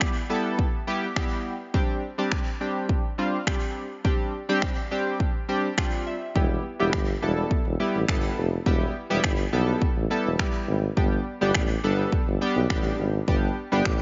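A straight, steady four-beat pulse drives this upbeat, summery dance-pop passage, cut from a longer piece. A punchy, layered electronic pop drum kit sits up front, with finger snaps over a tape-warm kick. Chorused retro synth keys carry the accompaniment throughout: a glossy, bright blend of pulse and sawtooth waves with pulse-width modulation, a filter sweep and fast-attack, decaying notes, pumping against the sidechain. The keys play a short fill from 5.5 to 6.4 seconds, and at 6.4 seconds a close-miked tuba enters on the bass line, its vibrato-laden tone pumping in the same way. The harmony moves from E minor through Csus2, back to E minor, and arrives on G, all within light reverb and a digital ambience.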